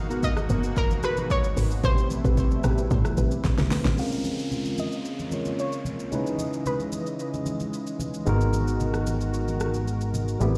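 A steady, straight amapiano groove drives this deep, hypnotic fragment, built on an overdriven deep house kit with a punchy kick, fat snare, metallic hats, rim click and shaker sitting up front, while low-tuned, soft-handed congas murmur in the background. A tight, percussive log drum bass with a mellow FM character anchors the opening bars under a smooth, detuned analog pad that pumps with sidechain compression and wavers with chorus and tremolo, and a dark, ring-modulated chord stab flickers briefly behind them. Over the top, a round, warbling vintage pluck carries the melody through chorus and delay as the minor ninth chords drift by. A drum fill at 3.4 seconds leads into a new section at 4.0 seconds, where a bright, barky tine electric piano joins the accompaniment, a downlifter sinks underneath, and a filter sweep carries the texture forward. At 8.3 seconds a funky, wave-folded, saturated analog bass takes over the low end, all of it set in a light stone-room reverb that sounds like a big system playing in a bare space.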